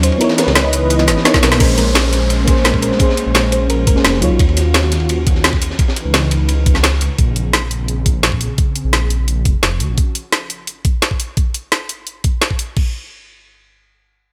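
This excerpt from a rolling, soulful liquid drum and bass track at 172 BPM in Bb minor opens on a drop, with a mellow FM electric piano, a detuned analog pad, a tine-like synth pluck, a deep saw bass and two drum kits all sounding together. The electric piano is soft and warbling, with chorus, vintage 12-bit sampler grit and dub echo, and it drops out at 4.4 seconds. The pad holds smooth chorused chords under a long filter sweep, while the pluck plays quiet background arpeggios with chorus and delay until 4.0 seconds. Beneath them, the rumbling, beating bass sits up front. An overdriven drum and bass kit with a woody snare and bright hats plays alongside a gritty, dark-toned breakbeat kit with a high-tuned snare and rolled-off top. During a drum fill, a knocking, overdriven electronic kick enters at 1.3 seconds, and a band accent follows at 1.5 seconds. A faint downlifter then sweeps in the background, and the chords cycle through Dbm9, Bbm9 and Ebm9 in a lightly reverberant mix carrying a faint mains hum.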